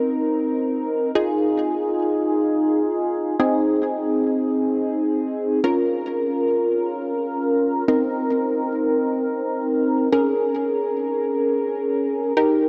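Melancholic yet driving, this short pop passage moves in free time in Bb minor, tuned slightly sharp to A4 = 441 Hz. A funky polysynth comp plays alone throughout, from 0.0 to 12.7 seconds, staying between C4 and Bb4. Its detuned sawtooth tone is punchy and dark, with a fast attack, a filter pluck and a moving notch. The notes are sustained, and chorus and digital delay thicken the sound, while the synth sits up front in the mix. The chords pass through Cm7, Fm7, Ab and Bbm before returning to Cm7 and settling on Bbm7. A huge ambient reverb with an 8.3-second decay surrounds the part, giving this fragment of a longer piece a vast, hanging space.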